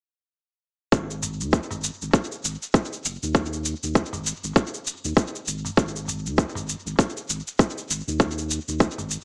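A loose, swung 16th-note groove at 99 BPM in 4/4 drives this short organic downtempo excerpt, its warm, earthy mood carried by a tight, up-front electronic kick and a tape-warm shaker wrapped in tape echo, both starting at 0.9 seconds. A deep, round sine sub bass with sidechain pumping moves between Gb1 and Eb2, while a very quiet udu, small and acoustic, joins at 1.2 seconds. The mix is dry yet echo-heavy, with a small-speaker character.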